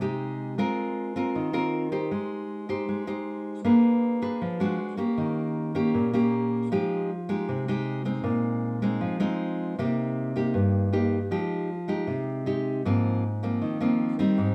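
A straight 4/4 bossa nova pulse carries this melancholic, wistful 14.5-second excerpt for solo nylon-string guitar, fingerpicked in a classical manner with a fresh-stringed acoustic tone spanning G2 to C5 as it moves through rich chords such as Fm9, Ab69 and Bb7b9, the guitar sitting up front yet heard from further back in a large studio with moderate reverb.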